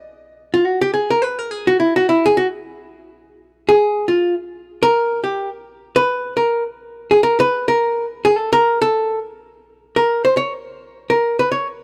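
An up-front archtop guitar, miked and amplified, plays a clean, dark, compressed picked solo from 0.5 to 11.7 seconds in this smoky, swinging jazz fragment at 210 BPM in 4/4, heard in a dry, close 1970s-style studio sound with light reverb and a faint mains hum.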